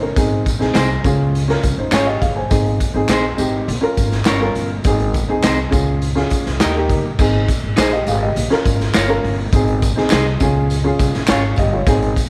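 Uplifting 1960s-style soul excerpt in which a woody, slightly detuned upright piano and a thumpy, gut-strung pizzicato upright bass sound together from the start, joined by a saturated, gritty garage drum kit with a punchy kick in a bright stone room alongside tambourine, maracas and group handclaps, while a slightly broken-up, compressed electric guitar adds picked stabs from 0.7 seconds, coloured by spring reverb and slapback echo.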